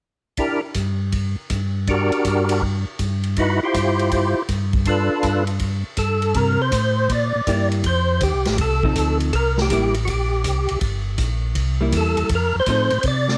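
A soulful, bluesy soul jazz organ trio cut from a longer piece opens at 0.4 s in C mixolydian at 161 BPM with a swung 4/4 feel, as a fat, lightly overdriven tonewheel organ with third-harmonic percussion, key click and chorus vibrato carries the melody through a slow rotary speaker over an acoustic big-band drum kit of hi-hat, ride, a medium-tuned snare and a punchy kick. A second, round and dark tonewheel organ, also up front with slow rotary, supplies the bass line, and the harmony moves from Gm6 and Cadd11/G into a blues turn around C7 and F7. At 7.5 s a clean, picked hollow-body electric jazz guitar adds compressed accompaniment, while the drums and guitar carry a cassette-tape tint in a small room with light reverb, fitting this home recording on cassette.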